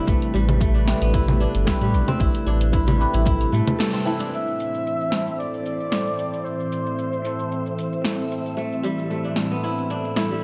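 A crisp, ringing kora plays fingerpicked arpeggios through a delay, setting a mystical, earthy tone for this organic downtempo piece, joined by a bell-like, barky electric piano and an airy, detuned pad that both pump under sidechain compression with phaser. A round sub bass and punchy, overdriven electronic kick drive the opening alongside a deep house kit of congas, hi-hat, shaker and snare, until a band accent and brief break at 3.8 seconds, after which the kit carries on beneath the other parts. A soft, flute-like synth lead with vibrato enters up front at 4.3 seconds, a faint wind-like noise texture drifts in at 5.8 seconds, and a lush hall reverb wraps the dark, warm production.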